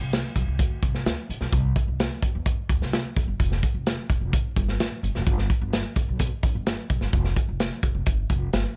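A woody, thumpy pizzicato upright bass on gut strings opens this uplifting, danceable excerpt of uptempo 1960s-style soul at the very start. From 0.1 seconds it is joined by a crunchy, up-front breakbeat drum kit with a tight kick, medium-tuned snare and hi-hat, its smooth, rolled-off top sounding dark and close in a small room, all dry with little reverb.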